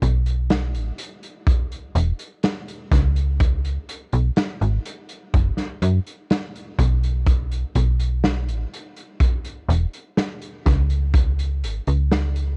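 Hazy and nostalgic, this vaporwave excerpt moves at a slow 62 BPM in C# minor, with a snappy, metallic slap-like FM bass sitting up front in a low register alongside a punchy, saturated kick drum that carries gritty 12-bit sampler character and stops at 11.3 seconds. Behind them, a quieter vintage kit of hi-hat and medium-tuned snare sounds from a small, pumping room with a rolled-off top and the same sampler grit. The whole recording is dry, with little reverb, and wrapped in worn cassette tape that gives it a warbly pitch drift.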